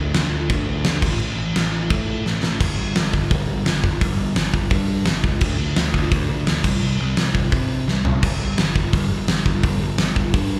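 Upbeat and rowdy, this 171 BPM punk rock excerpt pairs a growly, overdriven fuzz bass, picked and up front, with a big acoustic rock kit whose fat snare, punchy kick, crash, hi-hat and toms ring in a bright stone room. A drum fill at 2.3 seconds leads into a longer second section and another arrives at 7.9 seconds, all heard as a live gig through a club PA.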